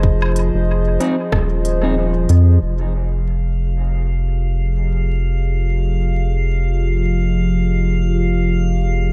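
Ambient dub at 93 BPM in F minor, this short, spacious and meditative passage rests on a warbling, detuned pad holding sustained chords with chorus and reverb, moving from Ab/F to Fm7 at 2.6 seconds, where a filter sweep begins working on it. Beneath it, a round, deep analog bass sits up front throughout, while a tight electronic kick drum plays only through the opening 1.5 seconds. A crisp, tape-tinged kit of hi-hat, rim click and woodblock sits low in the mix under dub echo, with a swung sixteenth-note feel. Brief stabs from a clean, dark semi-hollow electric guitar, also steeped in dub echo, appear between 1.0 and 1.9 seconds. From 3.2 seconds a quiet, glassy texture of drifting overtones holds a single high F, adding a bright shimmer over the echo-heavy, dry-roomed mix and its vinyl crackle.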